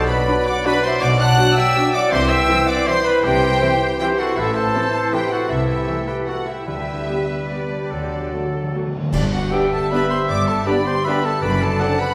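A 3/4 waltz pulse, pushed and pulled with rubato between 138 and 175 BPM, carries this sweeping, festive orchestral ballroom passage in G major, cut from a longer piece. The chamber violin section sings the melody with focused vibrato, while a very quiet, lush symphonic violin section, a bright oboe, a distant silver flute with a crisp attack and a smooth clarinet in the background weave second lines around it. Beneath them a ringing, fingerpicked concert harp plays arpeggios, a dark bassoon and a very quiet viola section fill in the accompaniment, mellow French horns hold sustained chords, a roomy trumpet adds stabs from afar, and even cello and expressive double bass sections anchor the bass. At 6.7 s dark cymbals, a cymbal swell and concert bass drum, close and dry, join faint calf-head timpani, whose fill leads into a band accent at 9.1 s as the harmony arrives on G. A clear, tight trombone section enters at 9.5 s with sustained chords, and the orchestra sits in the wet reverb of a recital hall.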